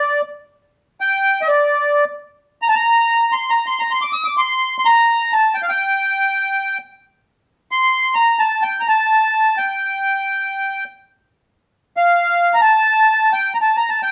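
Soulful and melancholic, this unmetered fragment of an Arabic maqam piece features a solo accordion heard across the full 14.1 seconds, ranging from D5 up to a quarter-flat E6. The accordion sits up front with a reedy, sweet tone, its light tremolo tuning and band-limited, vintage character giving it an aged charm. A wet studio reverb and the feel of musicians playing live in one room surround the instrument.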